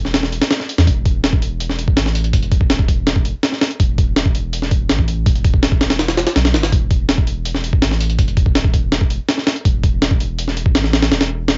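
A straight 4/4 jungle break drives this dark, atmospheric drum and bass excerpt. The gritty, pitched-up sampler drum kit sits up front, its thumpy kick, medium-tuned snare and hi-hat compressed and given cassette tape grit. Beneath it a deep, round dub sub bass holds sustained low notes. Light reverb and a dull, home-recorded cassette sound, with nothing above 7.7 kHz, frame the whole piece.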